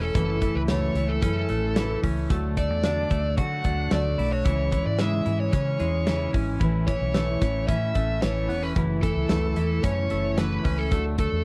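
A bright, youthful stretch of jangly indie pop, cut from a longer piece, opens on a dark, distorted, up-front bluesy lead guitar carrying the melody over a full-bodied fingerpicked jumbo acoustic, arpeggios from a twangy, compressed twelve-string electric and a round, foam-muted vintage bass, with a big rock drum kit joining at 0.2 seconds with a punchy kick and rolled-off top as the chords move through F#m7, D, C#m and A, all in a dry, close 1970s-style studio sound marked by lossy compression artefacts.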